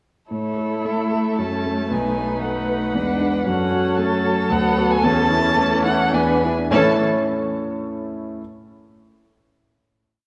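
Spirited and lively, this brief classical-period piano quintet movement in A major moves at a quick 100-117 BPM in a rubato 3/4, with a dark, mellow concert grand up front rocking through broken chords in deep bass beneath a distant first violin singing an expressive, vibrato-laden melody with portamento, while a rich second violin, a focused viola and a smooth cello sustain chords, all bathed in a wet concert hall reverb and the warbling pitch drift of worn cassette tape, before the final A chord arrives at 6.7 seconds, the strings falling away at 7.0 while the piano lets it ring out to 8.4 seconds.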